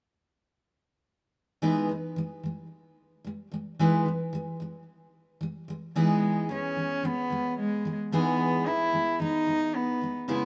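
Bathed in a moderate plate reverb, this easy-going, heartfelt pop excerpt opens at 1.6 seconds with a full-bodied, up-front picked steel-string acoustic guitar on an Emaj7 chord, before a close, reedy cello with a gut-string, period-style tone enters at 6.0 seconds to carry the bowed melody.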